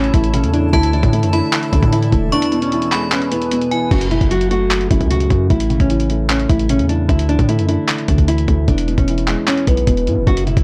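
A half-time trap groove drives this brooding, hard-hitting hip hop excerpt: a compressed, muffled lo-fi sampler-style kit of thumpy kick, handclaps, hi-hat and crash cymbal sits up front over a punchy, heavy 808-style bass. A dark, fingerpicked nylon-string guitar carries the melody through a low-pass filter and tape echo, while a soft, boxy felt-muted upright piano plays the accompaniment. A bright, inharmonic FM bell with chorus and a cloudy, evolving granular pad in the background both fall away at 3.9 s, after a break from 2.3 s, all within a dry, gritty hardware sound and digital ambience.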